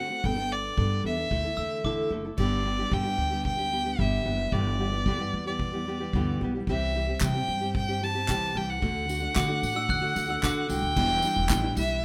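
Light reverb surrounds this wistful, reflective slice of acoustic pop at 112 BPM in a straight 4/4, where a rich, smooth bowed violin with vibrato carries the melody up front over a fingerpicked, classical-style nylon-string guitar, its finger squeaks audible. A woody, growly pizzicato upright bass and an unplugged studio drum kit played with bundle sticks, with a punchy kick, handclaps, tambourine and crash cymbal, join at 0.2 seconds, while a dark, bell-like glockenspiel struck with hard plastic mallets adds brief ringing touches as a second line. A jingly tambourine enters in the background at 7.2 seconds as the chords move from G through Em7/G, C and D before arriving on Em7.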